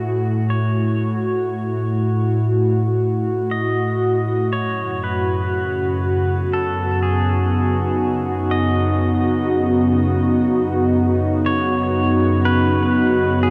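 A warbly, tape-like pad sits up front in this spacious, serene ambient excerpt, holding sustained chords from F#2 to F#4 with a slow attack, long release and a detuned blend of sawtooth and triangle tones. Its lo-fi, nostalgic character comes through in its mellow warble, thickened by chorus and its own built-in reverb. A clean, twangy electric pedal steel guitar carries the melody between F#4 and D#5, played with fingerpicks and slide, with compressed volume swells trailing into delay as it fades in across the full 13.5 seconds. The piece moves at a slow 60 BPM in a straight 4/4, shifting from F#m7 to Badd9/F# at 4.5 seconds. The whole mix is dreamy and soaked in a huge ambient reverb with a cassette-tape haze, and the passage is cut from a longer piece.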